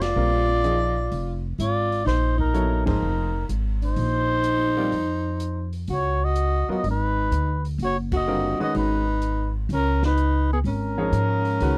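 A swinging 4/4 at 126 BPM drives this hypnotic, intense modal jazz excerpt, with band accents at 0.0, 2.8 and 8.0 seconds as the harmony moves from Bb9sus4 to Db13sus4. A veiled, cup-muted trumpet carries the melody with scooped notes, while a raspy, growling alto saxophone with vibrato plays a second line beneath it, over a woody, thumpy pizzicato upright bass placed up front. A clear baby grand piano with short sustain enters at 0.2 seconds to accompany, and a dark-cymbaled acoustic drum kit with a boomy kick sits low in a dry, close 1970s-style studio sound.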